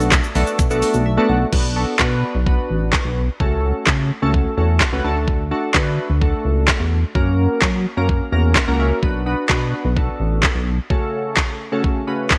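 Driving and energetic, this dance-pop passage in B minor runs at 128 BPM in a straight 4/4 and is cut from a longer piece. Glassy digital keys with a bright, sine-based tone, filter sweep, chorus and sidechain pumping carry the accompaniment, stepping forward with fills around 0.8, 4.6 and 8.1 seconds. Beneath them, a chorused synth bass blends pulse-wave and sawtooth colour into a dark, saturated, retro sound with a plucked filter, its sidechain pumping continuing until it stops at 10.8 seconds. The smooth R&B drum kit sounds electronic and tape-warm, with a knocking kick, woody snare, hats, handclaps, shaker and crash, and it drops out briefly from 1.1 to 1.5 seconds before the next section opens. The harmony moves from Bm7 through Bm, F#m/C#, D and F#, all set in a light reverb with the parts sitting up front.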